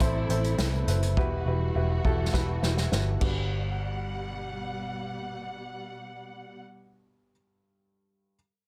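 This anthemic, hopeful piano-driven pop fragment in G major opens at 103 BPM with everything at once: a woody, slightly detuned upright piano with short sustain, lush bowed strings with expressive vibrato, a round, foam-muted picked electric bass up front, and an acoustic kit played with bundle sticks, its dark cymbals and tight kick sounding distant and roomy. The harmony moves from Am to Emadd9, and a drum fill from 2.3 seconds leads toward Gmaj7 at 3.2 seconds before the kit drops out. The strings drop out at 6.6 seconds, the bass follows at 7.3 seconds, and the piano plays on alone to 8.4 seconds, all within a dry, dense, heavily limited modern master.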